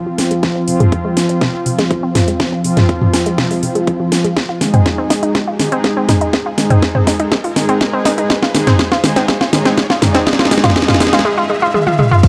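Driving and dramatic, this excerpt of melodic techno at 122 BPM builds through a drum fill that pauses briefly near the end, over Fm moving to Ab, with brassy, detuned analog pad stabs up front until 11.2 seconds, a round, nasal wave-folded pluck arpeggio under a filter sweep, a very quiet riser and impact from 2.4 seconds, an up-front house kit with cracking snare, metallic hats, crash and toms, a punchy tape-warm kick in the background, and a gritty electronic hi-hat barely audible at 12.2 seconds, all set in a dark production with huge ambient reverb.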